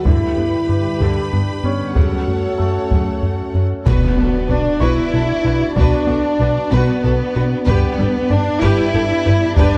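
In a slow, straight 6/8 pulse, this tense, brooding cue from a hybrid orchestral and electronic film score opens on up-front, dark, woody cellos and a rubbery, nasal square bass riff. Close taiko drums struck with hard sticks drive the low end from the start. Rich, lush viola and violin sections sit above them, joined by a mellow, loosely played French horn section holding chords, a hollow, flute-like pad with chorus, and a very quiet harp-like synth pluck spinning arpeggios. A bright grand piano with tape echo and audible action noise adds texture in the background until 7.7 seconds. At 3.9 seconds an electronic impact hits as the harmony moves to B minor, a background violin line carries a melody on D5, and a clear chamber double bass section deepens the bottom. The whole mix sits in a moderate scoring-stage reverb with a dark production.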